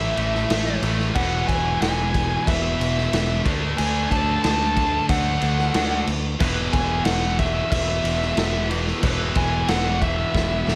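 A straight 4/4 hard rock pulse at 91 BPM drives this anthemic, energetic excerpt, where a raw garage drum kit with a punchy kick, saturated snare and crash enters up front at 0.2 s under a growly, bright picked bass, three riffing guitars (a very quiet cranked stack, a scooped compressed distorted guitar and a double-tracked high-gain one, the latter two in the background) churn through A5, E, D and E5, a dark, bluesy overdriven lead carries the melody with distortion and digital delay, and the drums close with a fill at 10.3 s in a dry mix.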